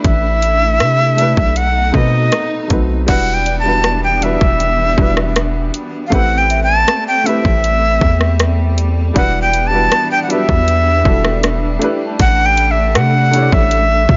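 A breathy, bright jazz flute carries the longing, sensual melody of this contemporary R&B excerpt over a dark, intimate baby grand piano, lush bowed strings set at a distance, a deep sine-like 808-style bass, an overdriven trap kit with a hard-clipped kick and bright hats, and a delicate bell-like celesta that enters at 3.5 seconds, all in a small room.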